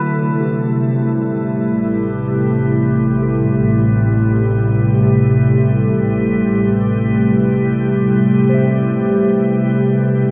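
Ambient in free time and A minor, this serene, spacious passage cut from a longer piece rests on a sustained Am7 chord from a glassy FM pad up front, bathed in ensemble chorus and its own reverb, while a drifting, sine-toned harmonics texture with floating overtones fades in beneath it. Very quiet, muted felt-like synth keys trace soft, intimate arpeggios, and a bowed chamber double bass section holds a low A with light vibrato and a tender sul tasto tone. At 3.4 seconds a warbling, vintage analog drone with chorus joins in the background, all set in a lush hall reverb with a dark, warm production.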